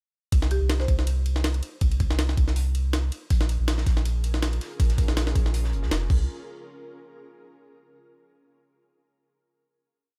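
Nostalgic and raw, this short drum and bass piece in a jungle style runs at 161 BPM in 4/4 with a light swing on the sixteenths, launching straight into a drop at 0.3 seconds that holds until 6.3 seconds before a final hit. A compressed, pitched-up sampler drum kit sits up front, playing a heavily chopped breakbeat with a thumpy kick, high-tuned snare, hi-hat, ride and crash, re-recorded in a large room. Beneath it, a deep, round dub sub bass with tube saturation carries a dub-style line between F1 and Eb2. A woody, buzzing marimba struck with medium mallets plays short answering phrases from 0.5 to 1.3 seconds, roughened by vintage 12-bit sampler grit and dub echo. From 3.3 seconds a very quiet, dark, looped acoustic breakbeat with edits adds hi-hat and a medium-tuned snare with a saturated, rolled-off top, and at 4.1 seconds an ethereal, airy pad enters with slow-attack chords shimmering through ensemble chorus, reverb and tremolo. 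The harmony moves from C5 to Bbm7 and then Cm7, all set in a small room reverb.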